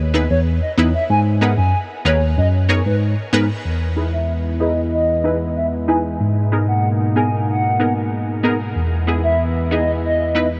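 A worn, slightly out-of-tune tine electric piano carries the bass line in this sultry, tough dancehall excerpt, sitting up front with a clean tone through a combo amp at a straight 94 BPM in 4/4. Over it, a punchy chord stab built from detuned sawtooth and square waves snaps in with a fast-attack filter pluck, bright and full-bodied, shaded by chorus and a low-pass filter. A hollow, woody, clarinet-like synth lead carries the melody with a soft attack, gentle vibrato and a noise layer, its mellow square and triangle tone trailed by analog delay. At 3.7 seconds the piece moves into a new section marked by a filter sweep, and at 4.0 seconds a smooth analog pad of detuned sawtooth enters with slow-building sustained chords. The harmony moves between Emaj7 and G#madd9, and the whole mix is soaked in a huge ambient reverb that gives it a dreamy haze.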